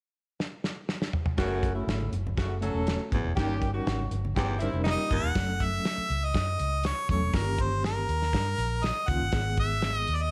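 A straight 4/4 groove in uptempo 1960s-style soul opens with a drum fill on a cloth-damped, thuddy kit, its tight kick and rolled-off top sitting up front in a small room. At 1.4 seconds the band arrives on F#m: a dark, round, foam-muted fingered bass, a worn, slightly out-of-tune tine electric piano with fast tremolo through a combo amp, a raspy, gritty baritone saxophone riff, a warm jazz-style horn section playing a second line, and very quiet, thin-skinned congas. The mood is driving and passionate as the harmony moves between F#m and D#7/G. A bright, close-miked harmonica takes the melody from 4.9 seconds with light vibrato, soft attacks and scooped notes, and by 5.2 seconds the horns and congas have stopped, with the saxophone following shortly after. The excerpt, cut from a longer piece, closes on G#m with light reverb.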